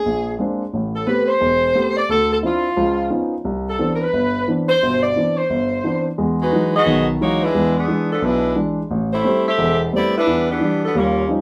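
Brassy and joyful, this short jazz excerpt cut from a longer piece swings at 176 BPM in 4/4, with a moderate swing on the eighth notes. An edgy saxophone section carries the melody from the first moment, tight and up front, its vibrato-laced tone capped by a smooth top end. Beneath it, a warm grand piano supplies the accompaniment from 0.1 seconds, sounding intimate and natural, with the soft clatter of its action audible close up. The harmony moves through rich ninth chords such as Bb9, Am9 and Cmaj9 in the opening section, then shifts at 6.2 seconds into a second section built on Emaj9, E7, Am7 and Em7. The two parts sound like a band playing together in one room, bathed in a wet but short studio reverb.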